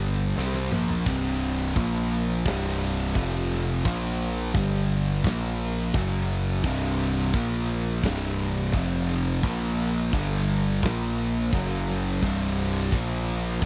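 A straight 4/4 pulse at 86 BPM drives this ominous, sludgy stoner and doom metal excerpt, where a big acoustic rock kit with a punchy kick, medium-tuned snare and rolled-off top opens with a fill from 0.4 to 1.1 seconds before settling into the groove. Up front, a growling picked electric bass with tube-saturated overdrive sounds bright and amped, while two thick fuzz guitars, one dark and one warm, sit in the background with a double-tracked, overdriven semi-hollow guitar, all grinding through a riff of C5, Bb5, F5, G5 and F#5 power chords. The sound is dry and close, in the manner of a 1970s studio recording.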